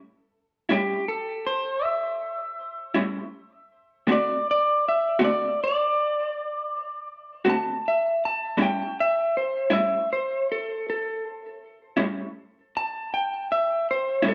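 A dark, warm studio sound with a moderate room holds this rollicking, swaggering slow blues fragment in 12/8 at 53 BPM, tuned to A4 = 445 Hz, where from 0.7 s two slightly broken-up, lo-fi, compressed electric guitars through a small old amp sit up front, one fingering a high melody bathed in spring and plate reverb while the other picks a tremolo-treated accompaniment beneath, moving from A7 to D7 and back to A7.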